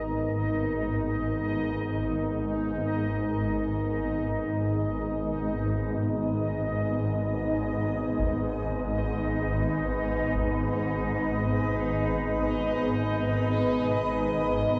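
This cavernous, unsettling dark ambient drone opens with three sustained layers sounding together in free time, all bathed in a wet spring reverb and an echo-heavy mix. Down low, a swarming, detuned sine drone sits up front, tense and slowly evolving as its grains shift. Above it, a granular cloud pad holds blurred, mellow chords over a G#madd9 harmony, its slow attacks and long releases smearing the edges. A bubbling sawtooth texture with resonant, random filter steps and chorus adds restless motion in the middle register. At 8.2 seconds a taiko ensemble of heavy sticks enters in the background, compressed and saturated, muffled by a low-pass filter and trailed by tape echo, before dropping out at 10.6 seconds in this fragment cut from a longer piece.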